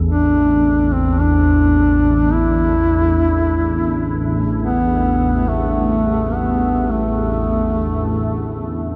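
Set in free time, this brief, dark and ominous ambient fragment pairs an up-front, detuned organ-like drone carrying ensemble chorus with a very quiet, deep sawtooth pad holding sustained chords, while a solo duduk with vibrato and scooped notes sings a folk-style melody through delay across a moderate, huge ambient reverb.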